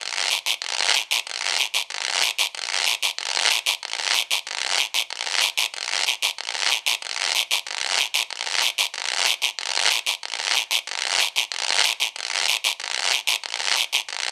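A straight 4/4 pulse at 187 BPM drives this danceable, festive Latin fragment, carried by a raspy acoustic guiro that sits close, dry and up front from 0.3 s to 14.3 s, with a new section arriving at 9.6 s in a rough home-demo mix touched by light reverb.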